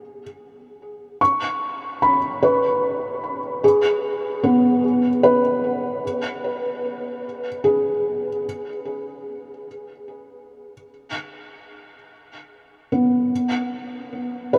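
Ambient, peaceful solo piece in 3/4 for felt-muted upright piano, cut from a longer work, with the soft, dark, intimate piano sitting up front, its thick felt, short sustain and audible action noise clearly heard through its delay. The piano moves from G#m/B to Bsus2 at 1.2 seconds and back to G#m/B at 3.6 seconds, with the harmony falling away from 8.4 seconds. A huge, wet reverb with an 8.8-second decay places it all in a vast, echoing space.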